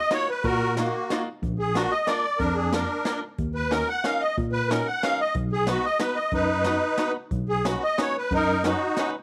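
A reedy, shimmering musette accordion sings the melody up front in this whirling, nostalgic rubato musette waltz in 3/4, joined almost at once by a twangy bluegrass banjo played with fingerpicks and a jazz drum kit played with brushes on hi-hat, boomy kick and snare, while from 0.4 seconds an overdriven tine electric piano through a combo amp carries a gritty bass line with fast tremolo and tube saturation, all in a small room with light reverb.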